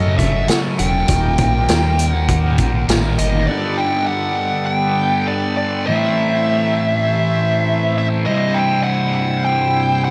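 A straight 4/4 groove opens this trippy, dark stretch of psychedelic rock, with a punchy vintage drum kit playing from 0.2 to 3.3 seconds and a growling, overdriven fingered bass holding the low end until 3.5 seconds. Up front, a thick, double-tracked fuzz guitar churns a riff through a phaser, while a dark fuzz lead guitar carries the melody through tape echo. A bright, reedy tonewheel organ sustains chords with key click and a slow rotary speaker, all bathed in huge, dreamy ambient reverb as the harmony moves from F#m and D# to Gadd9, Am and C.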